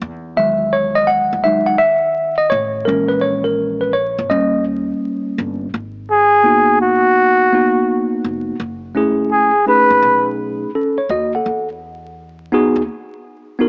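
Mellow and nocturnal, this jazz-hop cut from a longer hip hop piece moves at an unhurried 84 BPM in G# minor, with a loose swing on the sixteenths. A plucked upright bass with a woody, steel-strung tone sits low and soft beneath a worn, slightly out-of-tune tine electric piano that plays clean and up front. The electric piano carries the opening as a solo feature over gently shifting jazz chords such as Emaj7 and D#7. At 6.1 seconds a breathy flugelhorn enters close and intimate, singing a short, whispered jazz line with soft attacks, scooped notes and a touch of vibrato before falling silent at 10.3 seconds. Light small-room reverb, vinyl crackle and a small-speaker coloring give the recording a dusty, late-night feel.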